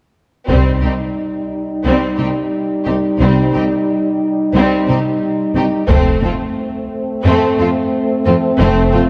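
Dark and spacious in concert-hall reverb, this relentless, heroic slice of epic orchestral film score sets a clear, distant violin melody over a focused second violin line and rich, intense violas, while an up-front French horn section holds warm chords above smooth, even cellos and double basses, and a taiko ensemble with heavy sticks strikes from the background at 0.5 and 5.9 seconds.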